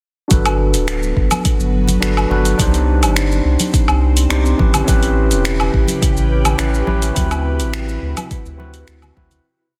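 A dense, heavily limited mix with light reverb carries this warm, sunny sunset chillout piece in G major at 105 BPM, where a round, up-front sine sub bass with a dotted rhythm and a deep, tape-warm electronic kick anchor a light lounge beat of finger snaps, hi-hat, shaker and woodblock, while close, dry congas sit in the background, a barky, overdriven tine electric piano through a combo amp holds rootless chords with syncopated pushes through low-pass filter and delay, and an ethereal, detuned pad entering at 0.8 s drifts behind with chorus and phaser over Gmaj7, Cmadd9, A9 and D13 before the whole piece fades out from 6.4 s to 9.4 s.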